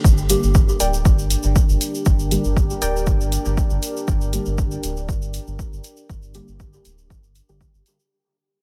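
A brief, meditative dub techno fragment in G minor at 119 BPM opens with a punchy electronic kick up front, a round analog bass, a grainy tube shaker and a moody, slow-blooming ambient pad, with the pad and bass pumping against the sidechain over a lightly swung 16th-note feel. At 0.3 seconds dark electronic hi-hats and deep, mellow chord stabs arrive, the stabs warbling through chorus, phaser and dub echo, while a lo-fi, dusty pluck riff with a filter sweep echoes briefly from 0.8 to 2.9 seconds. The nocturnal passage sits in a digital ambience and fades out across its full 8.1 seconds.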